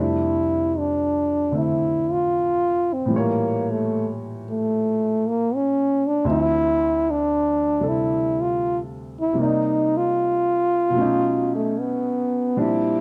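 A mellow, close-miked trombone sings the melody with light vibrato over a warm, natural baby grand piano, both up front in this romantic, intimate jazz ballad with a swing feel. The harmony drifts from F6 through A7b9 and Dm9 to Cm7 and B9. At 12.6 seconds a rich, smooth bowed cello section enters with sustained chords in the background, all captured by close, detailed microphones with light reverb before the fragment is cut off.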